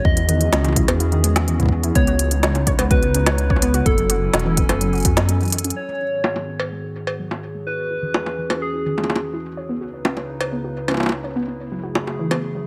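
A dark, rumbling detuned saw bass sits up front with a deep, tape-warm electronic kick in this cerebral, intricate IDM excerpt at 126 BPM in 4/4, moving through C#m7 and F#m7 before both drop out around a brief break at 5.3 seconds. An organic electronic kit of woody snare, crisp low-passed hats, bongos and cowbell plays on, while a gentle, round FM lead with vibrato carries the melody until 9.3 seconds over a nostalgic, warbling lo-fi pad with 12-bit grit and a mellow, dusty pluck playing arpeggios with dub echo. From 5.8 seconds the pad and pluck take on filter sweeps as the chords shift to G#m7 and E6, with light reverb on the mix.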